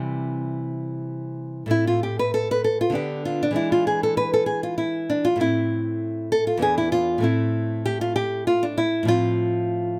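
In a flowing 3/4 at 97 BPM, played with a rubato feel, this serene baroque-style classical dance in A minor is carried by a single solo nylon-string guitar, fingerpicked and sitting up front with an acoustic, warm tone that spans E2 to B4. The harmony moves from C to Am at 1.7 seconds, passing through G7/D, E7 and E5 before settling on F/A at 9.1 seconds, all in a short cut from a longer piece. Light reverb lends a gentle sense of space around the small sound.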